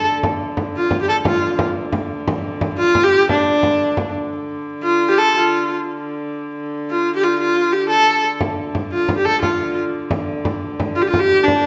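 Ancient and mysterious in mood, this medieval dance in a straight 6/8 is a short section cut from a longer piece, built from one strain played twice. A single bowed viola carries the melody up front with a clear, smooth tone, an even line and gentle vibrato. Beneath it, a lone hurdy-gurdy holds a low, dark drone, its wheel-bowed sound nasal and woody with an airy edge to the bow. A small frame drum, played with soft hands and heard close and dry, adds a bright pulse from 0.2 s, falls away around 4.2 s and returns at 8.4 s. The whole is set in the reverberant bloom of a recital hall, with a mellow top end that rolls off above 7.7 kHz.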